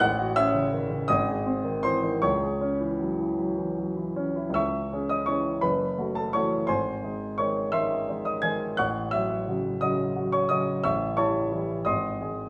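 A classical romantic character piece for solo grand piano, brooding and bittersweet, unfolds in a rubato 6/8 lilt spanning F#1 to G#6, its polished, present tone of short sustain sitting up front in a stone room's lingering reverb, a fragment cut from a longer work that turns to a new section at 4.6 seconds and closes on a G# chord at 11.9 seconds.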